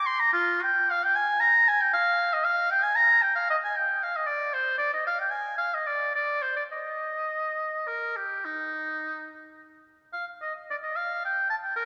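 A classical, baroque-style fantasia for solo oboe in E-flat major and 12/8 at roughly 68-78 BPM in dotted quarters, this radiant, dance-like fragment of a longer piece features a clear oboe with light vibrato, tuned to A4 = 439 Hz, ranging from Eb4 to C6 with free rubato phrasing over its 11.9 seconds, and set in a reverberant concert hall with a 2.6-second decay.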